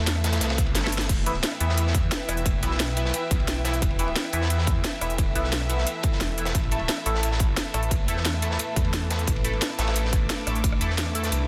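Aggressive and mechanical, this dark technical drum and bass excerpt is cut from a longer piece and runs on a straight 4/4 pulse. A snarling distorted saw bass sits up front with a growling, detuned unison tone and tube saturation, while a deep, moody ambient pad holds sustained chords in the background, pumping against the sidechain beneath chorus and built-in reverb. A smooth, bowed studio string section adds an ensemble texture with vibrato, also pumping in the background, and a band-passed chord stab enters at 0.8 seconds with a nasal, ring-modulated bite colored by phaser, analog chorus and delay. The drums layer a punchy electronic kick, a produced kit with a cracking snare, crisp hats, crash and rim clicks, and a gritty, saturated breakbeat kit with dark, high-passed cymbals and a medium-tuned snare. A drum fill arrives at 0.8 seconds, the harmony moves from Am to Em and on to A5, and the kick drops out at 11.3 seconds, all within a dense, heavily limited modern master.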